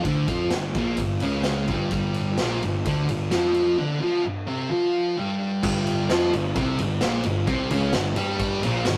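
A thick, double-tracked fuzz guitar riff and a raw acoustic drum kit open this rowdy garage rock excerpt, in a straight four-beat feel. A picked electric bass joins at 0.1 s, growly and overdriven, sitting up front beside the distorted guitar. The drums sound gritty and saturated, with a punchy kick, a medium-tuned snare, crash and ride cymbals, and a rolled-off top, all ringing in a pumping stone room. The harmony holds on a G5 power chord before moving to Gmadd11 at 5.6 s, where a new section begins. A light reverb and tube saturation give the whole a rough, rehearsal-room character.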